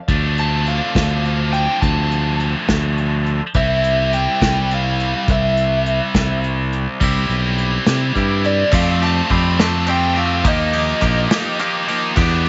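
A short cut from a longer indie rock piece, heard in a small room with light reverb, jangly and carefree in 6/8. A scooped high-gain guitar with distortion and a twangy, clean electric guitar with subtle chorus play riffs over an overdriven, growly fingered bass and a soft brush kit with a punchy kick, while a dark lead guitar through a small cranked amp carries the melody from 0.4 s. The chords move from Dm7 through C and Cmaj7 to Fadd9 and Ebadd9, and a crisp, very quiet group handclap joins at 8.7 s.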